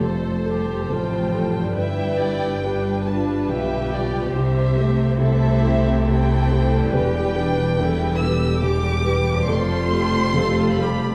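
Cinematic, emotional film score for orchestra in C major, uplifting and moving at a rubato 70 BPM in 3/4, where a warm chamber violin section sings the vibrato-laden melody over a woody, soft-attacked second violin line, close viola accompaniment, a felt-muted upright piano, dark horn chords, very quiet bright harp arpeggios, and a lush cello and distant double bass foundation, all moving through Fadd9, G, C6 and Em in a wet recital hall, cut from a longer piece.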